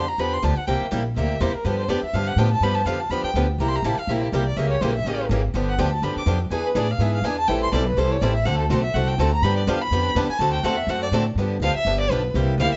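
Swinging and playful, this short excerpt of fast acoustic string swing in G mixolydian at 247 BPM sets an expressive bowed violin with vibrato and portamento as a second line over a boxy, finger-squeaking swing guitar, a bright parlour steel-string guitar in the background and a woody, thumpy gut-string upright bass played pizzicato, before a second violin takes the melody at 11.6 seconds, all in a moderate studio reverb.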